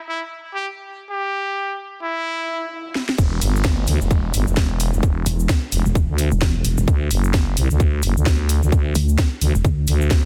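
Swung 16ths over a 130 BPM 4/4 pulse drive this swaggering, aggressive bass house clip in E minor, where a nasal, brilliant straight-muted trumpet plays a brief solo melody with light vibrato and digital delay while a background swell and downlifter build toward the drop. At 3.0 seconds a garage kit with cracking snare and hi-hat enters with a fill. At the 3.2-second drop a tight, overdriven electronic kick, a grainy, bright cabasa and a thick, growling FM bass with tube saturation and sidechain pumping all arrive. They are joined at 5.3 seconds by a dark, detuned pulsing pluck wobble bass with chorus as the harmony moves from Em to D in a dense, dry, heavily limited mix.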